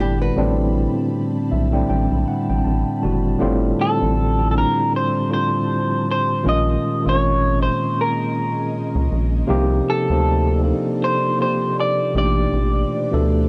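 A gently swung 79 BPM groove in 4/4 sets a smooth, late-night R&B mood, with a rubbery, hollow square bass sitting up front beside a clean tine electric piano that plays a fill from 1.1 to 3.4 seconds, while a dark, small nylon-string guitar adds a brief fingerpicked line only at the very start. An ethereal, airy pad holds mellow sustained chords in the background, washed in ensemble chorus and its own reverb, as the harmony drifts through extended minor and suspended chords like Am9, G9sus4 and Bbm11. At 3.8 seconds a slightly broken-up, lo-fi electric guitar through a small old amp takes the melody, compressed and touched with subtle chorus and tape echo, all captured in a dry, close 1970s-style studio sound.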